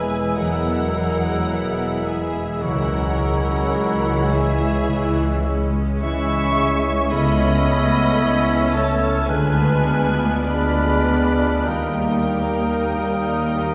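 Classical slow romantic orchestral movement, melancholic and solemn, unfolding with rubato in 4/4 across a 13.7-second fragment of a longer piece. A lush violin section sings the melody with vibrato, while a focused chamber violin section, an airy flute, a clear clarinet and an oboe weave second lines. A smooth viola section, a bassoon, a mellow French horn section holding sustained chords and a very quiet, ringing harp playing arpeggios fill out the accompaniment, with cello and double bass sections anchoring the bass, all heard from further back in a concert hall with a wet reverb.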